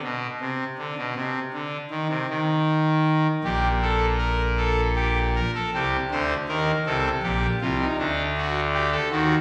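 Moving in a steady, straight 12/8 at 53 beats per minute counted in dotted quarters, this short passage from a longer baroque-style fugue in C minor carries a solemn yet driving mood. A single pipe organ plays alone throughout, registered on a trumpet stop with baroque voicing, its brassy tone and audible chiff sitting up front. The three contrapuntal voices span from a deep Bb1 up to C5, giving the bright reed sound real weight at the bottom. The harmony opens unaccompanied by chords, then settles onto G minor over B-flat at 3.4 seconds, C minor at 5.7 seconds and D major at 8.0 seconds. A recital hall reverb with a decay of about 1.2 seconds surrounds the instrument, lending the counterpoint a spacious, ceremonial presence.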